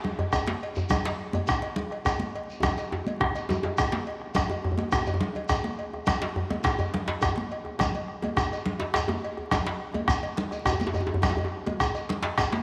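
A deep, dark bombo sits up front in this driving, festive West African drum ensemble, its vintage, band-limited tone anchoring a 12/8 groove with a straight feel. Bright, high-tuned congas with a thin skin are played with hard hands and carry a compressed, saturated edge, sharing that treatment with one of two tight, cracking djembes, while the second djembe, also struck hard, sits in the background with live-room ambience. A metallic cowbell rings out in that same live-sounding space, and a grainy, mellow shekere sounds distant, as if in a large room. The whole recording is bathed in a wet plate reverb and dusted with vinyl crackle, giving it an aged, spacious character. A drum fill from 2.6 to 4.4 seconds leads into a new section that carries the ensemble through to the end of this fragment, cut from a longer piece.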